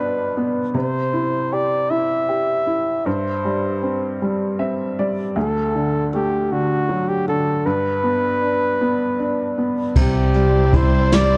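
A heartfelt, swaying six-eight pop ballad in C major at 52 BPM, where a close-miked flugelhorn sings the jazz-style melody with scooped notes trailing dub echo over a bright, woody upright piano that adds a fill at 4.2 seconds. At 10.0 seconds, on a Cadd9 chord, a round, punchy fretless bass, a dark brushed drum kit and a lush, distant string section with vibrato and portamento join in. The echo-heavy mix sits in light reverb, and this excerpt is cut from a longer piece.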